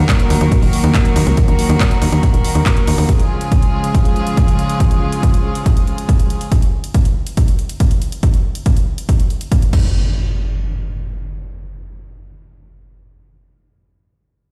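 A nasal, sawtooth-edged sequencer bass with a fast filter pluck drives this uplifting, euphoric trance excerpt at 140 BPM in 4/4, pumping against a punchy, tape-warm electronic kick over D#m before it drops out at 3.1 s as the harmony moves to C#. A rich, earthy chamber string section holds bowed, sustained chords with light vibrato and sidechain pumping until 6.5 s, while a layered, overdriven big-room kit of crash cymbal, handclaps and hi-hat sits low in the mix with studio reverb. The sound is heard through a big system in a bare stone room, and an up-front electronic impact arrives at 9.7 s to open a new section.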